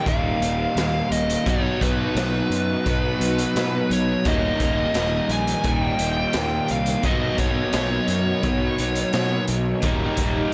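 A fuzz lead guitar carries the melody up front from the start, distorted and compressed with tape echo, over two overdriven electric guitar riffs sitting in the background, one treated with lush chorus and the darker one with reverse reverb, while a very quiet, vintage string machine cello pad holds sustained chords. This wistful, blissful shoegaze and dream pop rock moves at a straight 86 BPM in 4/4, swaying between Eb and Bmaj7 as a growly fuzz fingered bass and a saturated, boomy garage drum kit with a pumping small-room sound enter at 0.1 seconds. The whole dreamy mix is soaked in a lush hall reverb, and this short cut from a longer piece runs about 10.5 seconds.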